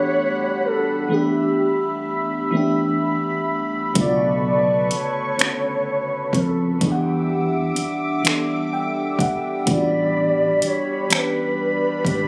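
A gliding, detuned lead sings its yearning melody over a mellow FM electric piano, layered with a soft pad, and a thick, bright unison pad holding sustained chords. This opens a slow, late-night six-eight R&B passage cut from a longer piece, moving at 42 BPM in dotted quarters with a straight feel. The lead is smooth and soft-attacked, shaded with chorus, phaser, vibrato and digital delay. The dreamy piano sits up front with chorus and tremolo as the harmony drifts from A13sus4 through G6, Bm9 and Em9 before returning to A13sus4. At 4.0 seconds a dark, round fretless electric bass enters alongside a produced, tape-tinged drum kit of knocking kick, metallic hi-hat and finger snaps placed close and forward. The electric piano slips in a short fill at 8.2 seconds, all within light reverb and the studio ambience of a phone recording made in the room.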